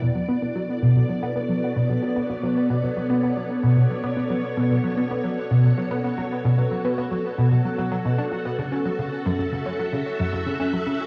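A tight, driving sequenced synth riff sits up front in this cosmic, expansive slice of ambient space music, its detuned sawtooth and triangle tones shaped by a fast filter pluck and coloured with chorus, phaser and an analog delay. Alongside it, a vintage string machine, also up front, plays lush, full ensemble chords with a slow attack and long release, thickened by a sub octave, ensemble chorus and a plate reverb. A very quiet, bright gated texture pulses in time high above, its unison triangle voices softened by built-in reverb. The harmony rests on Bm7 before moving to F#m7 at 8.6 seconds, in a steady, straight 4/4. Recorded at home on cassette in a wet booth, the short passage carries a tape patina on the riff and strings.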